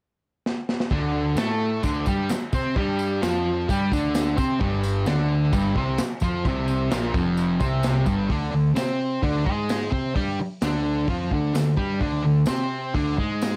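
Rowdy and swaggering, this garage rock clip, cut from a longer piece, kicks off with a short drum fill at 0.5 seconds before the guitar and bass crash in at 0.9 seconds. A bright, double-tracked fuzz guitar sits up front with its distorted riff, moving from D5 to G5 and returning to D5 as the second section begins at 8.3 seconds. Underneath, a picked electric bass adds overdriven fuzz, heard both direct and through an amp. The drum kit has a crunchy breakbeat character with vintage sampler grit: a tight kick, medium-tuned snare, hi-hat and dark crash cymbal, saturated and rolled off at the top in a studio room. A jingly tambourine joins in the background at 1.4 seconds, and a touch of light reverb adds some space.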